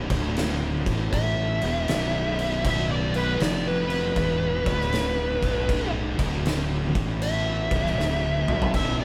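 Brooding and hypnotic, this short cut of stoner and doom metal moves at a slow 79 BPM in 4/4 with a swung eighth-note feel, sitting on B minor and tuned slightly low. A fuzz lead guitar takes the melody from 1.1 seconds, dark and compressed, pushed up front with wah and distortion as it solos in a high register. Beneath it, three thick fuzz guitars play the riff low, one warm and in the background, the other two dark and very quiet, one of them double-tracked. A growly fuzz fingered electric bass, bright and overdriven with tube saturation, sits up front alongside an oversized low-tuned drum kit with a fat snare, punchy kick and dark cymbals in a pumping stone room, which plays a fill at 8.0 seconds. A mellow tonewheel organ holds round, clean sustained chords very quietly, its rotary speaker turning slowly with vibrato and key click, while the whole band sounds as if playing live together in one room with moderate reverb.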